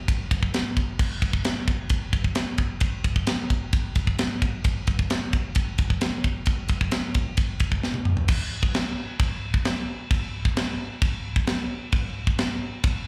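Relentless and dark, this straight-feel metal passage in 4/4 features a lone, tightly played acoustic drum kit, heard up front through a live venue's PA with a hint of club reverb, its crash and ride ringing bright over a high-tuned snare, toms and a tight kick, with a drum fill at 7.8 s leading into a new section at 8.3 s before the kit stops at 12.9 s.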